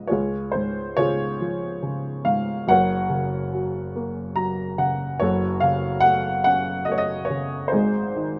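Tender and peaceful, this brief excerpt of lyrical classical solo piano unfolds in a rubato 6/8, with a warm, worn, woody, slightly detuned upright piano sitting up front in moderate studio reverb, spanning from deep bass to bright upper register, adding a fill between 4.0 and 5.2 seconds that leads the harmony from major into a darker minor colour before it moves on to Ab.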